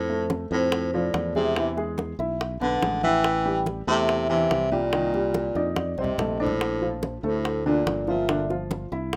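This sunny, sophisticated Afro-Cuban jazz excerpt moves at 143 BPM in F major. Mellow soft-mallet vibraphone carries the melody over a breathy, whispered baritone saxophone second line with vibrato, while a growly, bright fingered electric bass and an intimate baby grand piano, its action noise audible, fill out the harmony through chords such as Am7, Cm11 and Bbmaj9. Tight, high-tuned bongos sit close and dry, ringing congas stay in the background, a drum fill arrives at 5.8 seconds, and the whole has the rough feel of a home demo with moderate studio reverb.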